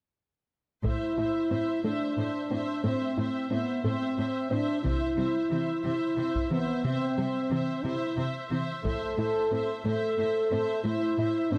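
A steady 6/8 pulse at 60 BPM drives this relentless, vast hybrid orchestral and electronic film cue in A minor, with a close, dry taiko ensemble struck with heavy sticks from 0.9 to 10.1 seconds as the harmony moves from A minor to C and back. Dark, distant French horns hold tight sustained chords as the loudest part, while a lush bowed viola section with intense vibrato accompanies above them and a warm cello bass fills in beneath. In the background, a mellow, nasal synth pluck with chorus and tape echo spins arpeggios, all set in a moderate scoring-stage reverb in a passage cut from a longer piece.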